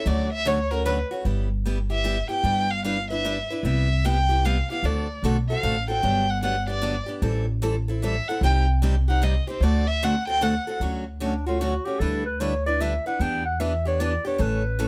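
Lightly reverberant and up close, this swinging, charming excerpt of jazz manouche at 151 BPM in 3/4 opens with an expressive, smooth-topped bowed violin carrying the melody with vibrato and portamento over a bright, freshly strung picked acoustic guitar and a woody, thumpy pizzicato upright bass, before the key shifts from G major to D major at 10.8 s and a soft-attack, vintage-toned subtone clarinet takes the solo at 11.2 s.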